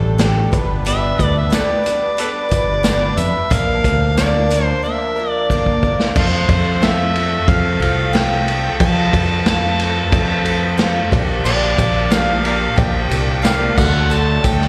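Jangly and open-road, this folk rock and heartland rock excerpt moves at a straight 91 BPM in 4/4, with a shimmering, octave-doubled twelve-string acoustic guitar carrying slapback echo, a reedy musette accordion sustaining chords in the background, a bright fingered electric bass up front, and a vintage drum kit with dark cymbals and a punchy kick that plays a fill from 5.5 to 6.2 seconds, while a gritty, overdriven harmonica with slapback echo takes the melody from 0.9 seconds over a jingly tambourine, all heard as a live gig through the venue's PA in a recital hall's reverb as the chords travel from Dsus4 and G through Bb and F to a closing D.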